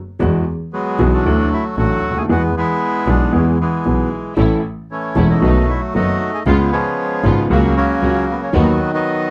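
A rubato 4/4 tango at 115 BPM, this elegant, nostalgic excerpt sets a reedy, dark bandoneon melody up front, entering at 0.7 seconds over a clear, woody upright piano accompaniment with short sustain and a bowed double bass played sul tasto, whose tone is pure, floating and distant. From 4.4 seconds a lush symphonic string section adds expressive stabs with vibrato and portamento in the background, as the harmony moves from Eadd9 and Dadd9 through A, B7 and C#7. The sound is dry and close, in the manner of a 1970s studio recording.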